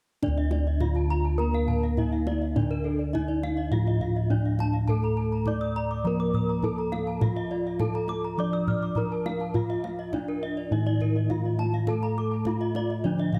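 A straight 4/4 pulse at 103 BPM drives this hypnotic, brilliant Balinese gamelan passage in D pelog, cut from a longer piece and tuned to A4 = 441 Hz. Up front, bossed gongs carry the bass with a round, beating, airy bronze tone, while a kendang sits in the background with tight, soft-handed strokes in a live room. The lead metallophone plays the melody with a wooden mallet, its paired tuning producing shimmering beats. Beneath it, a lower metallophone supplies a mellow, full accompaniment struck with padded disc mallets and heard close-miked. Two horn-mallet metallophones weave arpeggios above: one bright and ringing, the other dark and smooth, entering at 0.4 s. Dub echo trails all four metallophones, giving an echo-heavy mix set in light reverb and small room ambience.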